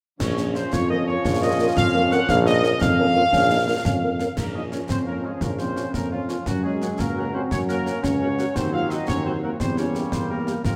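A clear, vintage-toned tuba anchors this resolute, martial 6/8 wind-band march fragment, carrying the bass beneath a dark, distant trumpet section's melody while a warm euphonium and very quiet woodwinds add second lines, background trombones sustain bright chords, soft-attack French horns accompany, and close, dry snare, clash cymbals and bass drum drive it all through a moderate scoring-stage reverb as the harmony turns to diminished chords near the end.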